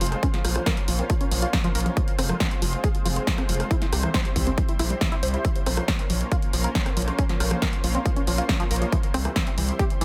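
Uplifting trance with an emotional, euphoric lift, cut from a longer piece and built on a Bbmadd9, Fm and C progression. A tight, nasal sequenced synth plays detuned sawtooth arpeggios with chorus, delay, sidechain pumping and a filter sweep running through, over a gritty, aggressive synth bass saturated by tubes and pumping as well. An analog drum machine plays from the start, its hi-hat, rim click and punchy snare re-recorded in a small room, and an overdriven, layered kick sits up front from 0.2 seconds, all set in digital ambience.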